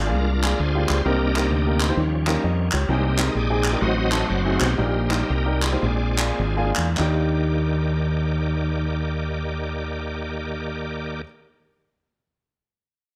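Uptempo gospel in Eb major with a swung 4/4 feel and an uplifting, soulful mood, moving between 98 and 131 BPM and cut from a longer piece. A bright, shouting tonewheel organ with slow rotary speaker and chorus vibrato takes the solo from 0.0 to 7.0 seconds over sustained chords, while a round, punchy fingered electric bass sits up front and a woody upright piano fills in accompaniment. Crisp, distant group handclaps carry the beat until 7.3 seconds, the tempo slows from 2.9 seconds, and the passage arrives on an Ebmaj7 at 7.0 seconds in a light studio reverb.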